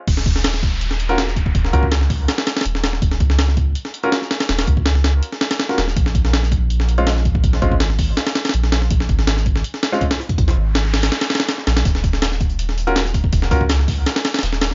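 A frenetic, atmospheric drum and bass and jungle drop rides a gritty, compressed sampler-style breakbeat kit with a thumpy kick and high-tuned snare, up front in a small room alongside a deep, round dub sub bass, while a background electronic downlifter and noise sweep open the passage and return at 10.6 seconds, grand piano stabs with a deep low end echo through dub delay, and a faint, saturated acoustic breakbeat kit of hi-hat and snare enters at 11.9 seconds.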